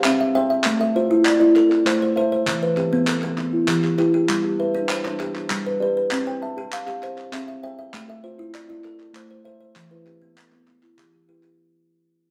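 Southern African traditional music in an mbira-style interlocking cycle at 132 BPM in 12/8, where two up-front kalimbas play rippling arpeggios through C, Am, Em and G — one mellow and ringing with a hollow-box fingertip pluck, the other woody with a short thumb pluck — over crisp, close group handclaps, the band heard live together in a large studio with moderate reverb, fading out across this 11.7-second cut from a longer piece.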